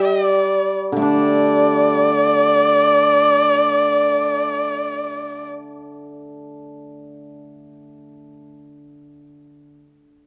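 Graceful and pastoral, this Chinese traditional passage, cut from a longer piece, moves in a free rubato at 62 BPM in 4/4, slowing down over its first second. A warm, expressive solo erhu carries the bowed melody up front with vibrato and portamento until 5.5 seconds, while a bright, shimmering hammered dulcimer accompanies it and continues alone until 9.8 seconds. A wet recital hall reverb surrounds the pair.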